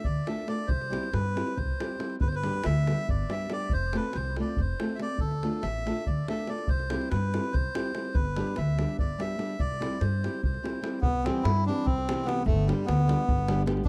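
A dry, close 1970s-style studio sound frames this exuberant, festive Balkan wedding-band piece in a straight 7/8 and C major, speeding up from about 275 toward 300 BPM in eighths as a reedy, nasal melodica with tape echo carries the tune up front over a small, fingerpicked nylon-string guitar with audible finger squeak, a thumpy, woody pizzicato upright bass, and a tight davul, with a new section arriving at 11.0 seconds.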